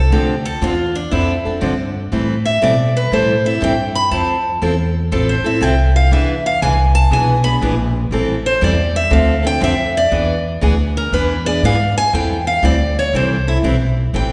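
A swung 4/4 pulse at 120 BPM drives this fiery, virtuosic slice of acoustic string swing in A minor, where a bright, boxy parlour steel-string guitar solos up front across the full 14.3 seconds over a woody, thumpy pizzicato gut-string upright bass and a fresh-stringed concert steel-string guitar comping through Dm9, Am9, Fmaj7 and E7, finger squeaks audible and the whole set in the wet bloom of a large hall.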